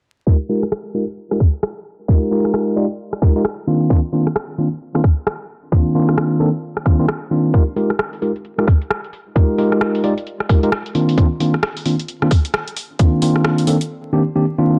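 A skippy two-step garage groove at 132 BPM in 4/4, swung on the sixteenths, drives this bouncy UK garage excerpt in F dorian, with a tight, up-front electronic kick and a layered garage kit of bright hi-hats and rim clicks. A mellow tine electric piano plays Fm11 and Cm11 stabs through a low-pass filter sweep and tape echo, while a digital ambience of vinyl crackle runs alongside. The kick drops out at 13.1 seconds, and a short break from 13.9 seconds leaves the electric piano playing on until 14.8 seconds.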